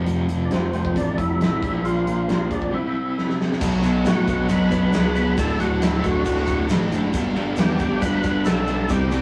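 Classic rock with a confident, swaggering strut at 136 BPM, this rough rehearsal-room cut opens with a growly fuzz bass up front, a tremolo-shaded overdriven guitar riff in the background and a big, punchy drum kit with a fat snare, joined at 0.5 seconds by a gritty tonewheel organ melody through a slow rotary speaker, before a drum fill at 3.2 seconds leads into a section where a hollow-body overdriven guitar adds a second riff, a grainy tube shaker sits low, and a lush vintage string machine hovers barely audible, holding sustained chords.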